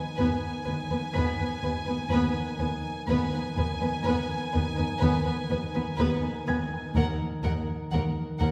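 A slow, straight pulse in four sets the pace for this tense, mysterious suspense cue, cut from a longer film score. A very quiet stroke of timpani with hard mallets sounds for only the first 0.6 seconds, close and dry, as a harp riff rings on a single low note beneath bowed strings played sul tasto. The violins carry a soft-edged melody high up with light vibrato, a second darker violin line enters at 0.2 seconds, and the violas fill in the accompaniment with vibrato. Cellos, woody and set in the background, share the bass with a dark double bass section. From 1.1 seconds a felt-muted upright piano, softened by thin felt, adds a mellow high texture, while the harmony rests on Abm/Eb before moving to Ebm at 7.0 seconds. Heard from further back in a scoring stage, the ensemble sits in a wet reverb that lends the intimate playing a hushed, shadowy distance.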